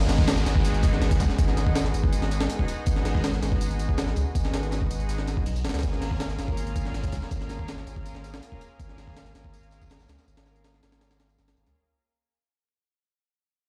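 An overdriven, pitched-up jungle sampler-style drum kit with a thumpy kick sits up front in this frenetic, nostalgic drum and bass excerpt at 162 BPM, while a dark, crunchy breakbeat kit with a high-tuned snare, hi-hat and tambourine rides in the background from 0.1 seconds. A deep, saturated sine sub bass anchors the G#m7 to A#m7/G# chords beneath a lush, detuned, bright unison pad with chorus, and an electronic downlifter sounds until 2.9 seconds. The mix fades out across its length, heard as if played on a big sound system in a bare stone room with vinyl crackle, tuned to A4 = 436 Hz.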